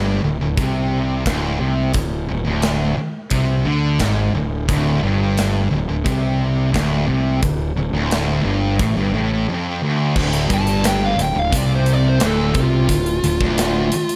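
A distorted fuzz guitar riff opens this brooding, sludgy stoner and doom metal excerpt at 88 BPM in D minor, sitting up front with a warm, heavy tone, while a second, darker fuzz guitar also plays a riff from further back in the mix. Underneath, a fingered electric bass with a bright, growly overdriven edge sits prominently, and a big acoustic rock drum kit joins at 0.6 seconds with crash cymbal, hi-hat, a tight kick and a medium-tuned snare, carrying the sound of a bright stone room. The opening stretch rests on a D power chord before the harmony shifts to D minor at 10.2 seconds. At 10.5 seconds a dark, distorted fuzz lead guitar enters up front for a solo, its tone trailed by analog delay as it rings out well above the grinding riff. Light reverb and a small room ambience frame the whole, and the clip cuts off mid-piece.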